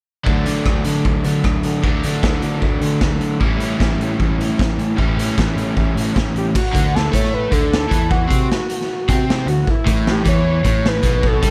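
A screaming, guitar-like synth lead cuts in at 6.4 seconds, its bright sawtooth and pulse-wave tone roughened by distortion and ring modulation and shimmering with chorus, vibrato and tape echo as it carries the melody over the second half of this upbeat yet wistful indie rock excerpt. Beneath it, a dark, double-tracked overdriven electric guitar drives a compressed, picked riff up front from the start, moving between D and A5 chords. A round, fuzz-laden fingered electric bass adds a dark, overdriven low end. The raw garage drum kit sits forward with a boomy kick, medium-tuned snare, rim clicks, hi-hat and crash, its saturated, gritty sound rolled off at the top and pumping within a bright stone room. A small room ambience surrounds the straight 4/4 groove, giving the short cut a loose, live-band immediacy.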